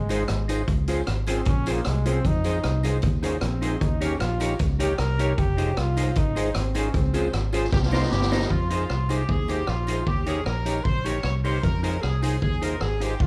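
Recorded live in one room with a moderate large-studio reverb, this energetic, driving ska excerpt in F minor at 153 BPM opens with a brilliant, punchy trombone solo over a round, foam-muted fingered bass, a clean semi-hollow guitar with tape echo, a fat, lightly overdriven tonewheel organ on a slow rotary speaker in the background, a street-band drum kit with a boomy kick and high-tuned snare, and a very quiet, jingly tambourine, before a drum fill at 7.7 seconds leads into a clear horn section that takes up the melody from 7.9 seconds.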